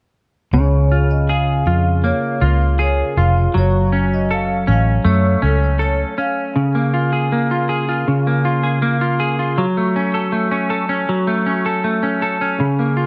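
A clean, compressed semi-hollow electric guitar sits up front, its hollow-body tone coloured by analog chorus and a warbly pitch drift as it fingers the accompaniment over a sunny, laid-back indie pop groove at 80 BPM in Db major, moving between Db6 and Gbm. A round, punchy, foam-muted fingered bass is also up front, while a ringing vibraphone with medium mallets and motor vibrato drifts in the background through subtle chorus and tape echo. The bass drops out at 6.0 seconds and the vibraphone at 6.4 seconds, leaving the guitar to carry this cut-out passage to 13.1 seconds in an echo-heavy, cassette-tinged mix with light small-room reverb.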